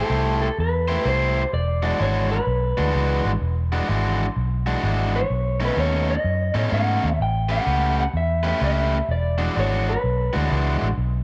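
A swung shuffle at 127 BPM in 4/4 drives this gritty, soulful electric blues in E mixolydian, cut from a longer piece and moving through Am7, E9, B9 and A9 chords. A bright, overdriven guitar through a cranked stack plays the riff up front, while a second guitar through a small old amp carries the melody in a dark, slightly broken-up, lo-fi and compressed tone. A vintage foam-muted fingered bass, round and punchy, also sits up front, with moderate spring reverb around the whole room.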